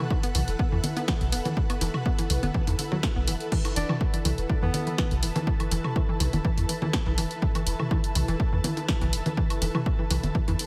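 A straight 4/4 pulse drives this sparse, clinical minimal techno excerpt, with an up-front, tape-warm electronic kick, a punchy analog drum machine supplying crash, hi-hat and snare, and a layered set of electronic cowbell, toms, congas and woodblock trailing delay. Beneath them a deep sine sub bass with a pitch-drop attack pumps against the kick, while a hollow, bouncy square-wave pluck riff sits in the background through chorus, cassette grit and analog delay, and an ethereal, airy pad hovers above with ensemble chorus and its own reverb over a suspended chord. Briefly, from 3.8 to 5.1 seconds, a breathy, close-miked alto saxophone slips in with jazz-style vibrato and a trail of delay.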